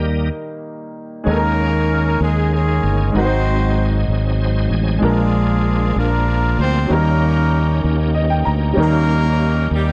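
A full, bright tonewheel organ opens this gospel passage with a short solo and break, its lightly overdriven tone turning through a slow rotary speaker with chorus vibrato, while a clear, naturally short-sustained baby grand piano and a round, up-front fingered electric bass sit beneath it. At 1.3 seconds a horn section takes up the melody, loose and pop-styled with light vibrato and octave doubling, carried well forward in the mix. The tempo is a slow 64 BPM in a straight 6/8, giving the music a reverent yet jubilant sway as the harmony moves from Eb through Eb7sus4, Ab7 and Bb7 to Eb7. The shouting organ steps out with a fill at 4.1 seconds, and the piano adds one of its own at 7.8 seconds, over the bass's dark, direct, amped tone. A small room ambience and light reverb give the production a dark, warm character, and the passage is cut from a longer piece.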